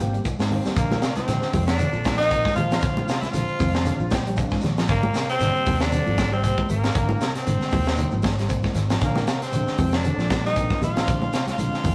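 A driving, joyful afrobeat groove at 116 BPM in 4/4, with a lightly swung sixteenth feel, is set up by a tight funk drum kit with a punchy kick and high-tuned snare sitting up front, while bright, high-tuned congas with soft hands come in at 0.2 seconds in the background, alongside a grainy, very quiet shekere. Underneath, a round, punchy fingered electric bass anchors the harmony as it moves between Abmaj9 and Bb7 in a Bb mixolydian frame, joined by quiet, dark arpeggios from a semi-hollow electric guitar and a reedy, overdriven electric piano with a fast tremolo playing accompaniment. A clean, picked electric guitar adds stabs only in the opening 0.8 seconds, after which a raspy, gritty tenor saxophone takes the melody up front with vibrato and scooped notes. Behind it, a growling trumpet and a veiled, cup-muted trombone section play a second line very quietly. The electric piano steps forward with a fill around 3.9 seconds, and the whole cut has the rough, live character of a rehearsal room, soaked in a wet stone-room reverb.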